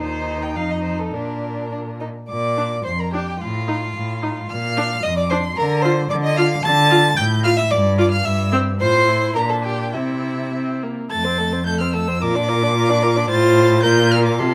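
An expressive first violin sings the melody with vibrato and portamento, sounding distant, over a smooth, even second violin line, a warm, even viola accompaniment and a focused, up-front cello bass, in a graceful, spirited excerpt from a quick classical-period string quartet movement in 2/4 with a rubato feel, heard through close, detailed microphones and light reverb.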